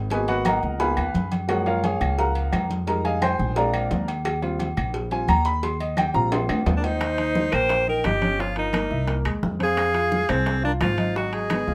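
A warm grand piano takes a solo over woody, thumpy pizzicato upright bass at 174 BPM in Eb major, joined by ringing agogo bells and timbales, bright, damped congas, round low-tuned cowbell and bongos, and woody claves from 0.5 seconds, giving this Afro-Cuban jazz excerpt a danceable, sophisticated feel. Near the close of a drum fill, a bright, punchy alto saxophone with vibrato takes the lead at 6.8 seconds, while a mellow, airy concert flute with a chiffy attack adds a distant second line. Rich extended chords such as Abm9, Db13 and Gbmaj9 colour the harmony under light reverb.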